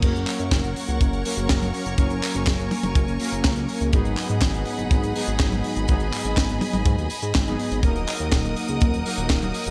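Melodramatic and bittersweet, this italo disco excerpt moves at 123 BPM in a straight 4/4, cut from a longer piece and moving from F# to G#m7 at 3.9 seconds and D#m at 7.8 seconds. A punchy kick and a tight funk kit with a high-tuned snare, hi-hat, handclaps, toms and crash sit mid-forward in a small room, while a glossy, detuned synth bass with a plucky filter carries the low end. Bold, fat analog synth brass plays mellow stabs with chorus, and a lush, distant studio string section holds sustained chords with vibrato above, all under light reverb.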